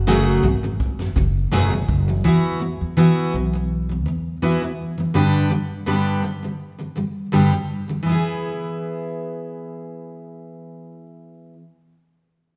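Acoustic pop with a carefree, easy-going mood, moving at 83 BPM in 4/4 with a light swing on the sixteenths, tuned slightly sharp to A4 = 443 Hz. A picked steel-string jumbo acoustic guitar sits up front and carries the accompaniment throughout, full-bodied with audible finger squeak. An upright bass adds woody, thumpy pizzicato underneath until 5.1 seconds. A vintage brush drum kit with a punchy kick, medium-tuned snare and shaker sounds distant and roomy, its top rolled off, and drops out at 2.2 seconds. The harmony moves from F#madd9 through Esus2 and G before settling on E at 8.0 seconds as a new section begins. A moderate recital hall reverb lends the recording the spacious air of a church or concert hall, and the clip is cut from a longer piece.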